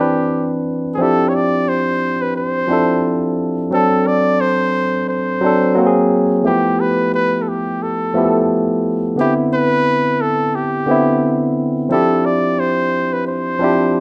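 Sultry and late-night, this 88 BPM R&B excerpt in D dorian sways on swung 16ths as a barky, lightly overdriven tine electric piano, pushed through a combo amp and set up front, carries the harmony over Cmaj9, Dm11, D7 and G13. A clear, close-miked flugelhorn takes the jazz-style solo melody in the middle register, its tone touched with slapback echo and plate reverb, while the keys share that plate sheen. Both parts play throughout, wrapped in a wet small room that gives the whole thing a rough home-demo intimacy.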